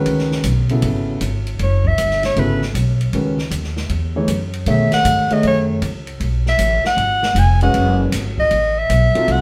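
Spiritual and searching, this short modal jazz excerpt swings at 156 BPM in 4/4, its eighth notes lilting over a harmony that moves from F#13sus4 to B13sus4 at 4.7 seconds. A grand piano with a mellow, up-front tone lays down accompaniment from the start, while a woody upright bass, plucked on steel strings and placed close, anchors the low end. An acoustic drum kit enters at 0.1 seconds, its boomy kick, medium-tuned snare, hi-hat and dark ride cymbal sounding natural in a small room. The soprano saxophone takes the solo from 1.6 seconds, breathy and close, using vibrato and a soft subtone in a jazz style. Studio reverb gives the whole a slightly roomy perspective, as if heard from further back.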